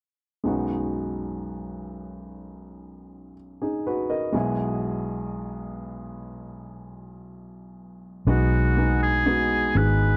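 A slow, straight 4/4 pulse at 61 BPM carries this heartfelt pop ballad excerpt in B major, opening on a warm baby grand piano alone from 0.4 s as it moves between B6 and E/B chords. At 8.3 s a clear oboe with light vibrato and a slapback echo takes up the melody in a classical solo style, while a dark, round, foam-muted electric bass enters beneath it with a punchy, amped tone. The sound is dry and close, like a 1970s studio recording, with each part sitting up front.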